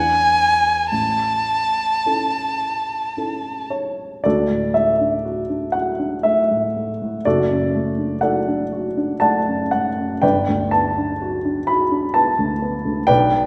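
A rubato 3/4 pulse drifting between 53 and 64 BPM carries this tender romantic classical fragment for violin and baby grand piano, moving from A major into D major at 4.2 s. The bowed violin sings the melody up front with expressive vibrato, portamento and a smooth top, then falls silent at 3.7 s. The dark, mellow piano continues its intimate accompaniment through E7, A, D, D/F# and Gmaj7 until 13.5 s, its short sustain and audible action noise set in a wet scoring-stage reverb.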